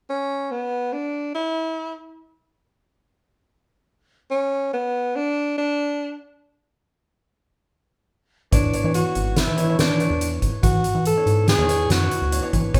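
Set in a straight, uneven 5/4, this driving, intricate progressive instrumental opens with a breathy tenor saxophone playing the melody alone, mellow and jazz-styled with vibrato and scooped notes. At 8.5 seconds the band joins on a Bmadd9 chord: a clear concert grand piano with deep bass accompanies, a rubbery square-wave bass adds a bouncy, dark filter pluck, and an up-front soft-mallet drum kit brings a fat snare, boomy kick and hi-hat. The players share one large studio with moderate reverb, giving this fragment of a longer piece a live, roomy sound.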